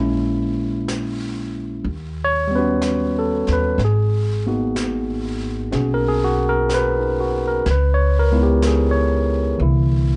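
A clean, up-front tine electric piano accompanies this romantic, late-night jazz ballad, voicing chords between D3 and C#5 from the very first second. It moves through A#m7b5, D#7alt and G#m9 before settling into C#m9 and touching C9 at 9.6 seconds. An acoustic upright bass, woody and thumpy with steel strings, sits close beside it, plucked low between G#1 and D#2. At 0.9 seconds a brushed jazz kit slips in far beneath, its medium-tuned snare and hi-hat set back in a studio room. The tempo is a slow 62 BPM in 4/4 with a gentle swing on the eighth notes, and the tuning sits at A4 = 444 Hz. Moderate studio reverb and a dark, warm production round off this 10-second fragment cut from a longer piece.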